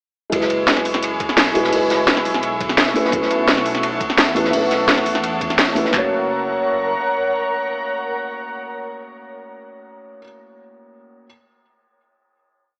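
Heard through a narrow, AM-radio-like filter and set in a lush hall reverb over a small room's ambience, this short, complete liquid drum and bass piece feels warm and uplifting. From 0.3 seconds a felt-muted upright piano with audible action noise plays mellow held chords with syncopated pushes, trailed by dub echo. At 0.6 seconds a glassy FM pad with ensemble chorus and its own reverb joins, floating ethereal, warbling sustained chords above it. Underneath, a dark detuned saw bass rumbles with long gliding notes. Three drum kits drive the drop together: an up-front, overdriven drum and bass kit with a cracking snare and bright hats rolling in a two-step pattern, a sampler-style kit adding a thumpy kick, handclaps and floor tom, and a crunchy looped breakbeat with edits whose snare, hi-hat and ride are high-pass filtered and dark-toned. At 5.9 seconds the drums fall away for a final chord, and the piano rings on alone until 11.3 seconds.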